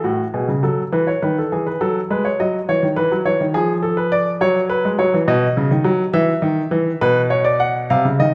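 The 6/8 time at 69 dotted-quarter beats per minute, played straight, carries this lively, joyful baroque-style two-part invention in F# minor for solo baby grand piano, heard across the full 8.3 seconds and spanning A2 to F#5. The piano sounds warm and natural, with short sustain and an up-front presence, set in a recital hall whose 1.6-second reverb adds a generous wet glow. The harmony moves briskly from F#m/A through E, C#m, a diminished seventh and B before settling on Bmadd9 as the passage breaks off mid-piece.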